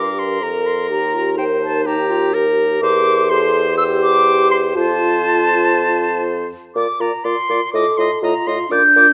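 A straight, brisk 4/4 pulse drives this spirited, cheerful classical-period movement for wind quintet, heard as a short section cut from a longer piece. The concert flute carries the melody high and up front, its airy tone shaped by vibrato and a soft attack, close-miked and expressive. Beneath it the oboe adds a bright second line with light vibrato, while the dark, smooth-topped clarinet and the mellow French horn supply accompaniment further in the background. The bassoon anchors the bass with a mellow, vintage character. All five play throughout the 9.1 seconds, moving from G minor through C and F harmonies to a settled B-flat before turning toward F7 at 7.7 seconds, all set in a moderate recital hall ambience captured by close, detailed microphones.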